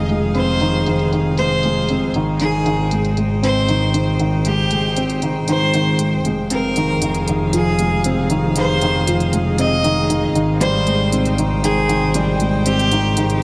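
Piano and strings electronica in F minor at 117 BPM, this melancholic, moving excerpt sets a soft, felt-muted upright piano riff up front beneath a bright, intense bowed violin melody, with a clear string quartet holding sustained chords, a veiled con sordino double bass section bowing the low line, and a smooth electronic hi-hat entering at 0.1 s, all in a moderate recital hall reverb as Fm7 and Abmaj7 alternate.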